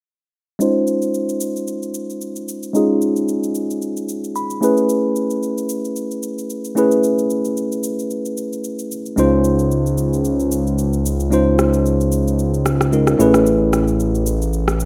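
An excerpt of relaxed amapiano at 112 BPM in 4/4, with a lightly swung sixteenth-note feel, opens at 0.6 seconds with a clean, up-front tine electric piano voicing lush Dbmaj9 and Amaj9 chords through a low-pass filter sweep. An electronic shaker and rim click sit low beneath it, giving a produced, programmed pulse. The electric piano slips in a brief fill around 4.1 seconds, and its warm tone carries the character of built-in speakers. At 9.2 seconds a fat analog bass arrives, its detuned sawtooth sound thick and sustained with a fast attack, planted prominently in the mix as the harmony returns to Dbmaj9. Light reverb surrounds the rough home-demo mix, lending the whole a warm, unhurried ease.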